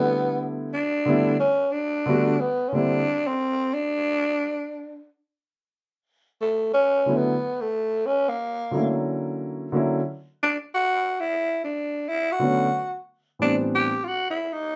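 A growling, raspy tenor saxophone carries a breathy, jazz-style melody with scooped notes throughout this cool, warm hip hop excerpt at 90 BPM with a swung 16th-note feel in D major, moving into a solo at 5.4 s. Meanwhile, a woody upright piano accompanies up front, drops out at 3.0 s and returns at 7.1 s over rich extended chords in a moderate studio room where the band plays live together.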